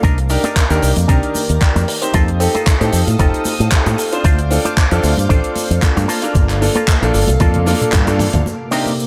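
A punchy, up-front fingered electric bass with an envelope filter drives this cosmic, sleek nu-disco excerpt in C dorian at 114 BPM, with a lightly swung 16th feel. A thumpy electronic kick and a dry, damped 70s kit with handclaps, hi-hat, shaker and toms play alongside a bright grand piano with sidechain pumping and slapback echo, a dark, clean electric guitar riff through an envelope filter, and very quiet ringing congas. A lush string machine in the background carries sustained Cm9, F7, Dm7 and Gm9 chords with vintage sampler grit, while a drum fill from 7.4 s leads to a band accent at 7.9 s.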